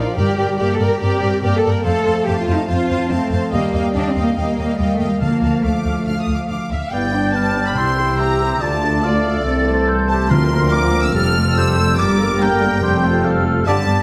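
A straight 4/4 pulse drives this adventurous, determined cinematic cue, cut from a longer piece. Bowed strings carry it throughout: an intense violin section with light vibrato sings the melody while a lush second violin section adds a focused second line. A smooth viola section sits in the background, and an expressive cello section and up-front double basses hold the low end. A mellow French horn section sustains chords beneath, and timpani with medium mallets punctuate the opening and return at 5.2 and 10.3 seconds. At 6.9 seconds woodwinds and brass join: a pure, distant flute, a vintage-toned oboe and a roomy clarinet add second lines, a very quiet, tight trombone section holds chords, and a soft-attack trumpet plays stabs. A wet scoring-stage reverb gives the whole ensemble a broad, cinematic space.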